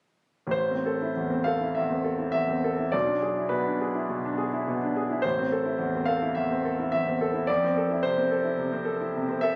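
A solo concert grand piano opens at 0.5 seconds, clear and up front with a deep bass and smooth, vintage tone, playing a brooding, passionate romantic character piece in A minor at 96-110 BPM with a rubato feel. The harmony moves from A minor through E7 over B, back to A minor and onto Fmaj7 by 7.5 seconds, the range reaching from low A1 up to F5. Captured on a phone in a recital hall with moderate reverb, this short excerpt is cut from a longer piece and ends at 9.6 seconds.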